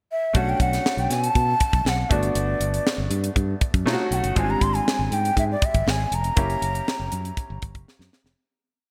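Polished 1980s jazz-funk pop in B minor at 120 BPM in straight 4/4, this short, complete piece carries a nocturnal, bittersweet mood. A breathy bamboo bansuri carries the melody up front with vibrato and a crisp attack, stating call-like motifs from a pickup at 0.1 seconds. Beneath it, a clear, smooth grand piano with a vintage touch and subtle chorus holds short-sustained rootless chords with grace notes, moving from Bm7 through Gmaj7 to a closing F#7b9. A warm, direct fingered electric bass sits forward with an agile, syncopated line full of chromatic approach notes, while a dry acoustic funk kit with a high-tuned snare and tight kick drives a crisp sixteenth-note studio groove. The bright digital production bathes the parts in a lush hall reverb with a touch of small-room ambience, and the music fades out from 6.4 seconds, ending with a drum fill at 7.9 seconds.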